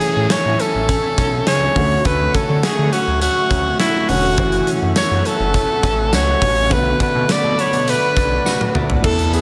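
Nostalgic and moody, this 1980s-style pop excerpt moves at 103 BPM in a straight 4/4, cycling through Amaj7, Dmaj7, F#m7 and Bm7. A bright, punchy alto saxophone sits up front with the melody, its vibrato and scooped notes trailed by delay. Behind it, a warm concert grand piano with deep bass supplies accompaniment, a shimmering, retro pulse-width pad holds slow-attack sustained chords, and a clean, direct-recorded electric guitar plays a compressed, picked riff bathed in lush chorus. A huge arena drum kit drives the track with a fat snare, punchy kick and bright cymbals under gated reverb, while a smooth, saturated synth bass with detuned sawtooth and square tones enters at 0.2 seconds. A jingly tambourine adds a very quiet sparkle from 5.0 to 8.6 seconds, and a drum fill closes the passage at 8.5 seconds, all set in light reverb.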